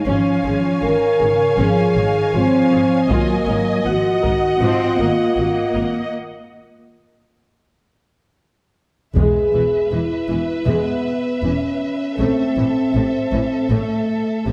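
A moderate scoring-stage reverb frames this triumphant, adventurous cinematic orchestral cue at 79 BPM, where a dark, up-front French horn section holds sustained chords over woody double basses and smooth cellos, a close, focused viola accompaniment and a distant second violin line, heavy-stick taiko hits land at 3.1 and 9.2 seconds around a break, and a soft-attack violin melody arrives with the shift to E major at 9.2 seconds in this excerpt cut from a longer piece.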